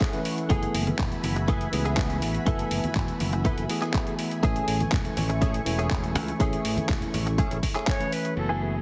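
Nu-disco at 122 BPM in a straight 4/4, sensual and sleek, cut from a longer piece and moving from F#m11 to Amaj7 under a lush, detuned sawtooth pad with chorus, phaser and sidechain pumping sitting in the background. A punchy, up-front electronic kick and a gritty, sampler-style soul kit of filtered hi-hat, handclaps and crash drive the groove, joined by very quiet, hard-handed congas, a growly fingered bass with tube saturation and pumping, a twangy clean guitar riff with ensemble chorus and delay, and a tine electric piano heard through its built-in speakers. Near the end, at 7.9 s, an airy, close-miked flute with an unsteady straight tone enters with digital delay, all inside a heavily compressed, radio-like sound with light reverb.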